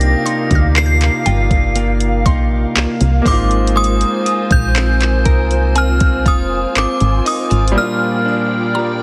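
A punchy, dark FM bass sits up front in this slow, late-night contemporary R&B excerpt at 60 BPM in C minor, its round, decaying notes paired with a smooth drum kit of knocking kick, warm hi-hat and handclaps roughened by vintage 12-bit sampler grit. Above them, a chiming, inharmonic synth carries the high melody with ensemble chorus and delay, its long release adding to the longing mood. A bright baby grand piano plays brilliant, long-sustaining accompaniment, while a clean, direct-recorded electric guitar picks compressed arpeggios through spring reverb and delay. A glassy, ethereal FM pad swells in with slow-attack sustained chords, and a woody, percussive synth pluck adds quiet texture in the background. The harmony moves from Cm11 to Ab69 at 3.3 seconds, and the bass and drums stop at 7.8 seconds as a Gm7/Bb chord arrives, all wrapped in a heavily compressed, radio-like digital ambience.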